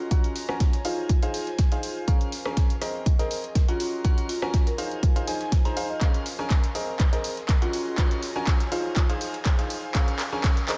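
A punchy, tape-warm electronic kick drives this energetic, soulful piano house excerpt in Bb minor at 122 BPM, under a clear, worn grand piano riff with sidechain pumping and a low-pass filter, an airy, breathy chorused pad in the background, a background marimba melody with 12-bit grit and tape echo from 0.8 to 9.3 seconds, a large-room analog drum machine of handclaps, hi-hat and rim click, and a very quiet, gritty, overdriven tambourine and snare, all building up with a drum fill from 6.0 seconds.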